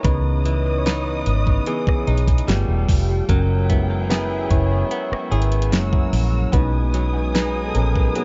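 This short excerpt of slow, longing contemporary R&B at 74 BPM opens with soft, rounded synth keys carrying the lead over chords such as C#m9, G9 and F#9sus4, their chorus and tape echo blurring into a digital ambience, while a punchy, foam-muted fingered bass and an up-front R&B kit with a knocking kick, fat snare, rim clicks and metallic hats hold the groove. Underneath, a clean, compressed, direct-recorded electric guitar picks bright arpeggios through tremolo and tape echo, and a veiled, distant string section sustains lush bowed chords. At 6.5 seconds a very quiet, woody mallet-like synth pluck adds a single high note as the harmony settles on B6.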